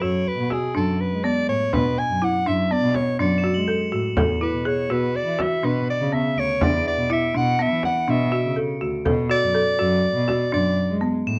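A straight 5/4 pulse at 123 BPM drives this restless, urgent piece of contemporary chamber music in B dorian, cut from a longer work. A deep, large frame drum played with soft hands sits close and dry alongside a bowed cello bass line, which is expressive and up front, with vibrato, portamento and a soft attack. Over the folk marimba's woody, rustic arpeggios on hardwood bars, a warm soprano saxophone carries the solo melody in a jazz-style subtone. In the background, crotales add a shimmering, bell-like ringing, dark and smooth under plastic mallets. The harmony moves from Bm to an E seventh at 4.2 seconds and settles on Bm7 at 9.1 seconds, all under light reverb and the warbly pitch drift of worn old cassette tape.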